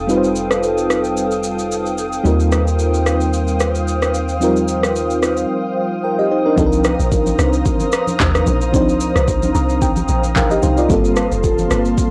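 A tremolo-laden FM electric piano and a glassy, ethereal pad with chorus, reverb and sidechain pumping open this deep, soulful amapiano excerpt in C dorian at 111 BPM, moving over F9 and Eb69 chords with a punchy, wave-folded analog bass and an overdriven, up-front afro-pop kit of deep kick, handclaps, rim click and shaker. At 6.6 s the chords shift to Cm11 and the bass gives way to a round, dark log drum, while ringing congas with soft hands sit in the background from 7.3 s and the electric piano plays a fill before a Gm11 at 10.9 s. The sound is dry and gritty, with transformer saturation.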